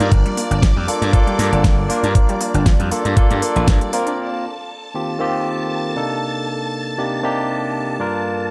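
Nu-disco with a cosmic, groovy swing, this brief excerpt opens with a knocking, up-front electronic kick, fat snare and crisp hats from a layered pop kit, overdriven slap bass and detuned unison pluck arpeggios with tape echo, all of which stop around 4 seconds, leaving a barky electric piano with 12-bit sampler grit and sidechain pumping beneath lush, phased string-machine chords to carry the Gm7 and Eb6 changes through to 8.5 seconds in a light digital ambience.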